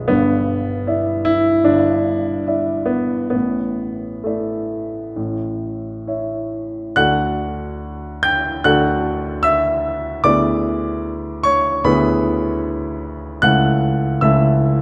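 Warm and lyrical, this romantic classical character piece for solo grand piano moves with an unhurried rubato in 4/4, the up-front piano's short sustain and its range from B0 to G6 set in a moderate concert-hall reverb, as the harmony passes from Em7/G through Asus4 and A, arrives on D at 7.0 seconds, then turns to E7/D and ends on A/C# in this passage cut from a longer work.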